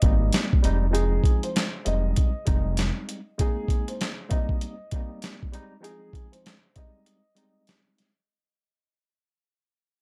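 A dark, dry mix frames this soulful, nostalgic boom-bap hip-hop fragment at 98 BPM with a 16th-note swing, where a gritty, thumpy sampler-style drum kit with handclaps, hi-hat and a medium-tuned snare sits up front beside a smooth sawtooth synth bass that drops out at 2.9 s, leaving a worn, lightly overdriven tine electric piano voicing Abmaj7 and Fm7 under a woody, boxy upright piano melody with audible action noise and tape echo as the whole piece fades out.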